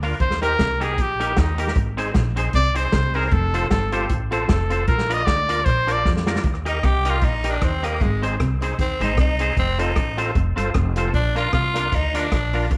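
A spring-reverb sheen and small-room ambience frame this bouncy, upbeat ska excerpt at 154 BPM in Eb major, where a woody, thumpy pizzicato upright bass and a vintage kit with a punchy kick and rolled-off top drive a lightly swung groove under a clean, hollow-body semi-hollow guitar with vibrato and slapback echo, fat overdriven tonewheel organ stabs through a fast rotary speaker, and a phased, slightly broken-up guitar riff in the background, while a clear, smooth-topped trumpet leads up front until 6.1 s and, after a drum fill, a raspy, growling tenor saxophone with slapback echo takes the solo from 6.7 s.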